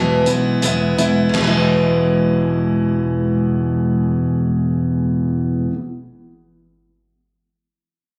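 Captured on a phone in a small, lightly reverberant club room with compression and a faint mains hum, this brief, hopeful folk-rock and heartland-rock fragment, cut from a longer piece, puts a bright, full-bodied dreadnought steel-string acoustic guitar up front with fresh-stringed picked jangle, underpinned by a warm, amped fingered electric bass, while a natural-sounding vintage drum kit with dark cymbals and a punchy kick adds crash, hi-hat and kick only from 0.3 to 1.5 seconds.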